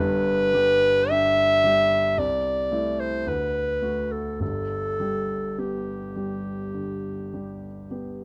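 A mellow clarinet leads this lyrical, serene classical excerpt, singing a romantic melody between G4 and E5 with a present, up-front tone in a classical solo style. Beneath it, a dark baby grand piano supplies the accompaniment from G1 to G4, its smooth, vintage sound carrying long sustain and sitting somewhat lower in the balance. The duo moves slowly, around 51 to 56 BPM in 4/4, with a flexible rubato feel in G major. The harmony passes from G through Am/C and D before settling back on G at 4.4 seconds. Both parts play throughout the brief 8.2-second passage, which is cut from a longer piece and captured in a dry room with little reverb.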